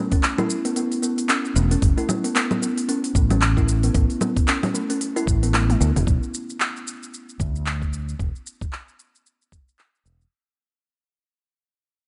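A swung 4/4 groove from a deep house drum kit of congas, handclaps, smooth hi-hat, shaker and toms, anchored by a gritty, thumpy electronic kick, drives this hypnotic, mystical organic downtempo excerpt in a light reverb. A woody, ringing kalimba plays delayed arpeggios until 6.0 seconds, while a dark, round fretless electric bass with subtle chorus and sidechain pumping enters at 1.6 seconds. After a drum fill, the groove fades out from 6.1 seconds.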